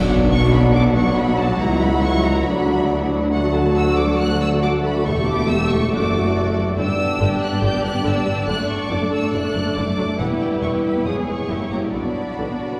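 Classical orchestral excerpt in B minor at 139 BPM, urgent and restless, where a lush, vibrato-rich high violin melody sings over a second violin line, smooth bowed violas, dark distant French horn chords, and a bass of expressive cellos, even double basses and a clear, very quiet tuba, with round soft-mallet timpani touches at 0.0 and 8.5 seconds, all bathed in a wet cathedral reverb as the harmony moves from Bm through G and Em to a closing F#7b9 that resolves home.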